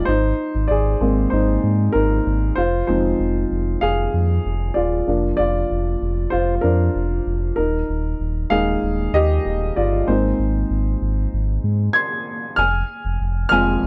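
A baby grand piano opens this driving, earnest piano-driven pop piece at 0.0 s, with a sub bass doubled at the octave joining at 0.1 s. The piano has a warm, natural tone and sits up front, playing a solo across the whole passage. Beneath it the sub bass is deep and full, with a pure sine character, a fast attack and sustained notes placed close in the mix. The harmony moves through Abadd9, Fm, Bb/F and Ebsus4. After a brief opening section, a longer middle section begins at 2.6 s before the opening material returns near the end. The sound is dry and close in a 1970s studio manner, touched by light reverb, and the passage is cut from a longer piece.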